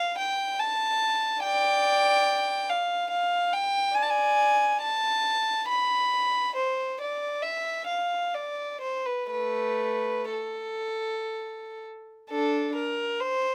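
A close, up-front recording in light reverb carries a lone bowed violin with a rich, reedy gut-string tone in period style. This introspective, grave fragment from a baroque-style suite movement for unaccompanied violin moves in a rubato triple metre, the single player ranging from A3 to B5 across its 13.5 seconds.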